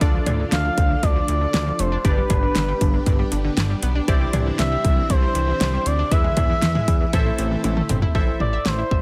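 Dry and densely limited, this short cut from a longer synth-pop track moves at 118 BPM in A minor, with a straight 4/4 feel and a melancholic, cool mood. A punchy, up-front electronic drum kit with a fat snare, metallic hi-hats, cowbell and toms drives it, alongside a thick, saturated sawtooth bass with a detuned, evolving character. From 0.5 seconds a smooth, expressive portamento lead carries the melody with vibrato and chorus. In the background sit round analog keys, a bright, warbling pluck playing arpeggios through chorus and delay, and a lush vintage string machine with ensemble chorus. The chords move from D minor through G and Cadd9 to E and A minor, and a drum fill at 7.6 seconds leads to the strings dropping out at 8.1 seconds.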